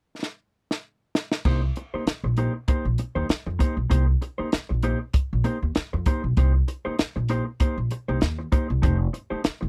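A compact cocktail drum kit with dark cymbals opens with a fill of crash, hi-hat, punchy kick and high-tuned snare before the woody, pizzicato upright bass and a clean, compressed, fingered electric guitar enter at 1.5 seconds over Cm7 in this funky, driving excerpt of swung 16th-note funk, its dry, close 1970s-style studio sound keeping the drums and bass up front.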